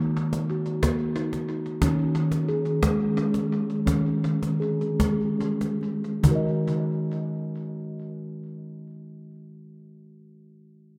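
Hypnotic and meditative, this short cut from a longer world piece drifts in a lilting 6/8 with a straight feel. A steel tongue drum played with rubber mallets sits up front, spinning round, pure, ringing arpeggios across its two-octave range, each note trailing a tape echo. Beside it, an acoustic cajon with snares adds snappy percussion captured in a live room, also up front and also touched by tape echo, until it drops out at 6.6 seconds. The pulse slows through much of the opening section as the harmony moves away from its home chord and then settles back into it, leaving the tongue drum to ring on alone until 10.3 seconds. A wet spring reverb and an echo-heavy mix wrap the whole recording in a lingering haze.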